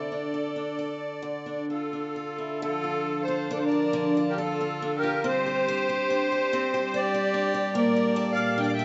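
A shimmering musette accordion carries the melody of this haunting, longing Celtic slow air in rubato 3/4 from the first moment, alongside a distant, dark bowed fiddle on a second line and an up-front, woody, boxy picked guitar with old strings, before a rich chamber string section adds sustained period-style chords with a gut-string tone at 2.6 seconds, the whole heard in a moderate concert hall reverb with a rolled-off top in this fragment cut from a longer piece.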